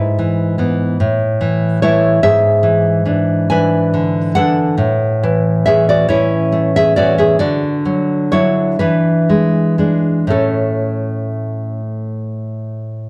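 Romantic solo classical guitar in A major, a tender fragment of a longer piece in a slow, rubato 6/8 around 38-50 BPM counted in dotted quarters, where an up-front, dark, fingerpicked nylon-string guitar with a deep classical tone and audible finger squeaks moves from E/G# through E7/G#, A, D and E7 back to A, set in a moderate recital-hall reverb with a warm production.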